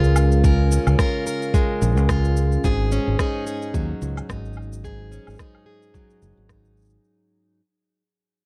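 A playful, delicate folktronica groove at 109 BPM in 4/4 with a light swing on the sixteenths, cut from a longer piece and fading out across its first 7.0 seconds as the harmony moves from Db6 to Ab7sus4 at 2.6 seconds. A picked, plugged-in steel-string acoustic guitar plays up-front arpeggios softened by a low-pass filter and tape echo, with audible finger squeak, over a fingered electric bass with tube saturation, while tape-warm electronic cabasa, woodblock and rim click sit low in the mix. An overdriven, muffled, thumpy electronic kick drum with a pitched-down sampler character enters at 0.4 seconds, all captured in a dry, close 1970s-style studio sound.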